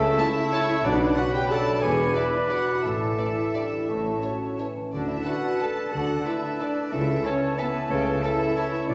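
Elegant and sweeping, this rubato orchestral ballroom waltz in 3/4, cut from a longer piece, sets a soft, floating violin section melody entering at 0.2 s over a second line of a clear clarinet, airy flutes, a distant oboe and more sul tasto violins, with dark, woody violas and a mellow bassoon in accompaniment, very quiet French horns holding sustained chords, ringing thumb-plucked harp arpeggios, and a low end of pure cellos, an intimate double bass section and a roomy tuba, heard in a wet recital hall.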